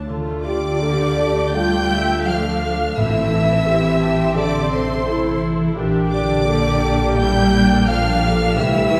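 A close, expressive violin section sings the high melody with vibrato and portamento in this moving, bittersweet cinematic film-score passage in D minor at 86 BPM with a rubato feel, over lush symphonic violas, mellow ringing harp arpeggios, dark, distant French horn chords, a rich double bass line and warm cellos, a focused second violin line and an airy, hollow flute in the background, and timpani heard from 3.0 to 4.0 s, with the orchestra heard from further back in a wet scoring-stage reverb.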